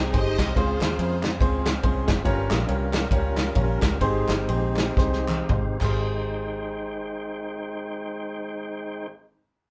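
A lush, distant string section carries the melody over a percussive tonewheel organ with key click and a slow rotary speaker and a round, dark fingered bass, the strings dropping out at 1.4 seconds in this hopeful, uplifting uptempo gospel piece in Ab major, swung in 4/4 between 106 and 142 BPM. A concert grand piano with deep bass fills out the accompaniment, joined by a punchy, up-front acoustic drum kit and hollow handclaps in the background, as the band slows from 2.3 seconds into a drum fill that ushers in a new section at 6.0 seconds. The players perform live together in a small room with moderate small-room reverb, cut from a longer piece.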